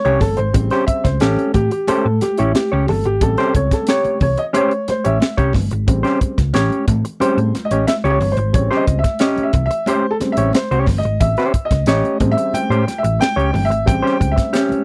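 A dry, close recording in a 1970s studio style, with a light touch of reverb, frames this gritty, playful funk passage cut from a longer piece. It moves at 90 BPM in a straight 4/4 and sits on a single A7#9 chord. A dark, woody, boxy upright piano takes the solo across the whole 14.8 seconds, playing stabs up front alongside a clean, fingered hollow-body jazz guitar that carries the accompaniment. A round, amped short-scale hollow-body electric bass, picked, anchors the low end. A dry, tight acoustic funk kit with a high-tuned snare, a tight kick and hi-hat drives the groove. Ringing, high-tuned vintage congas played with hard hands add a band-limited layer of percussion in the background.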